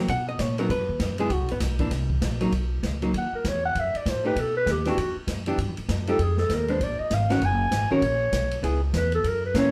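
Heard from further back in a moderately reverberant club, this brief cut from a longer piece is sophisticated, playful small-group swing and bop in B major at 197 BPM, with a dark, clean hollow-body archtop guitar comping up front alongside a woody, thumpy pizzicato upright bass and an acoustic kit with dark cymbals, a medium-tuned snare and a boomy kick. At 3.2 seconds a growling clarinet enters for its solo, raspy and gritty with subtone, light vibrato, scooped notes and a plate-reverb glow. Beneath it the changes move from Bmaj7 through F#m7b5, Baug and Fm7 to G#13sus4 and a rootless D#m7.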